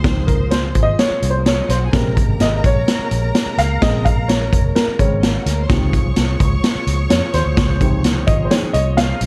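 A worn, woody upright piano, slightly detuned, carries the lead across this short uptempo 1960s-style soul excerpt in Db major at 128 BPM, uplifting and danceable over a punchy, up-front vintage drum kit and a round, foam-muted fingered bass. Behind it, a fat tonewheel organ holds sustained chords with light overdrive, chorus vibrato, key click and a slow rotary speaker, while a distant, lush string section bowed with vibrato adds a second line in plate reverb. A bright, twangy guitar through a small old amp slips in with a riff at 8.3 seconds, all within a dark, warm production and light reverb as the harmony moves from Dbmaj7 to Bbm7 and back.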